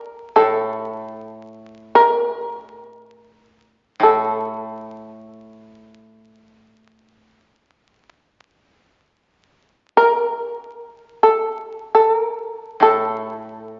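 In free time, this meditative, still passage of Japanese traditional chamber music, cut from a longer piece, is led by a powerful, up-front shamisen whose buzzing, percussive plectrum-plucked melody hovers between A4 and Bb4. From 0.4 seconds a woody koto, played with fingerpicks and sitting much lower in the balance, supports it on a low A2. Both carry the generous bloom of a recital hall, heard through the crackle and dulled top end of a very old 78 rpm record.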